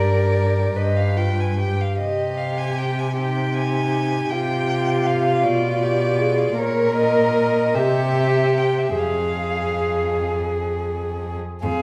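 Heard from further back in a reverberant recital hall, this elegiac, yearning slow romantic movement for string quartet, cut from a longer piece, sways in a rubato 6/8 at 44-54 BPM, with a dark, smooth-topped first violin singing the melody sul tasto with vibrato up front, a woody second violin carrying a second line, an airy-bowed, soft-attacked viola filling in the accompaniment, and a warm, intimate cello holding the bass as the harmony settles into F minor from 6.6 s.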